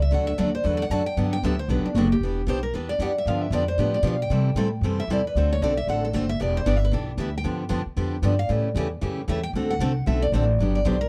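A picked steel-string acoustic guitar opens this short, playful cut of jazz manouche, carrying the melody between D4 and A5 over an upright bass from the very first moment. The tempo is a lively 229 BPM in 4/4 with a swung eighth-note feel, set in G major, and the lead guitar takes a solo that runs to 10.6 seconds. A second picked steel-string guitar joins at 0.1 seconds for accompaniment, its fresh strings giving it a bright tone that sits up front beside the lead's warmer, auditorium-like voice. The upright bass is plucked on gut strings, woody and thumpy, and is slightly the loudest of the three. Light reverb and a dark, warm production frame the trio as the chords move from D through Gmaj7, Em7, G7, C6 and D7 before ending on A7 to D7.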